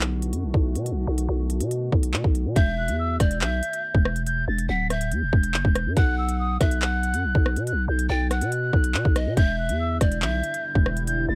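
Drill hip hop in E minor at 141 BPM with a half-time feel, cold and tense, cut from a longer piece. It opens on a short break where a deep, moody ambient pad with chorus holds sustained chords over a growling, buzzy 808-style bass and an up-front drill kit of hard-clipped kick, crisp hats, handclaps and rim clicks. At 2.6 seconds a distant, airy silver concert flute with vibrato carries the high melody through a low-pass filter, alongside a breathy, chiffy wooden pan flute second line with tape echo, and the pad returns near the end. The chords move from B7 through Em7 and B5 back to Em7, all in a dry, close-sounding mix.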